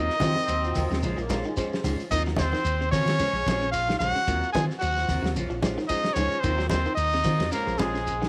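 A swung sixteenth-note afrobeat groove at 111 BPM in 4/4 drives this defiant, intense Eb dorian passage, cut from a longer piece, as a fat-snared soul drum kit, low-tuned congas and a grainy shekere sit in the background under a dark, round hollow-body bass, while the chords alternate between Ebm69 and Bbm9. A bright, punchy trumpet carries the melody up front with vibrato, alongside a raspy, growling second trumpet playing a lower second line, and a clear trombone section adds its own second line only from 0.2 to 2.0 seconds. Twangy, slightly broken-up guitar arpeggios through a small old amp and clean, dark semi-hollow guitar stabs, both with slapback echo, join a reedy electric piano with fast tremolo, all in a small room with light reverb.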